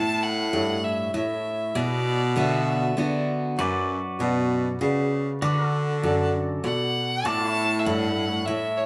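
Lonesome and dusty, this brief honky-tonk and classic country waltz in 3/4 puts a smooth, bowed fiddle up front in two phrases, the second beginning at 6.6 s, over bright, full-bodied picked jumbo acoustic guitar, a clear, jazz-style baritone saxophone carrying the bass with vibrato and a soft attack, a woody vintage upright piano, and a clean pedal steel guitar laying down sustained slide chords from 3.6 s, with the mix sitting in a moderate large-studio reverb.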